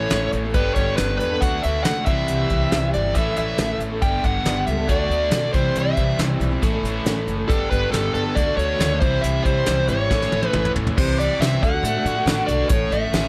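A dark, smooth overdriven lead guitar with tape echo carries the melody over a full-bodied picked dreadnought acoustic, a bright scooped double-tracked electric riff, thumpy woody pizzicato upright bass and an up-front brushed kit with a fat snare and punchy kick in this jangly, hopeful folk and heartland rock excerpt at 138 BPM in D major, cycling through A, Gadd9, D and C in light reverb until a drum fill at 10.1 seconds leads into a new section where a very quiet, boxy grand piano with audible action noise enters at 11.0 seconds.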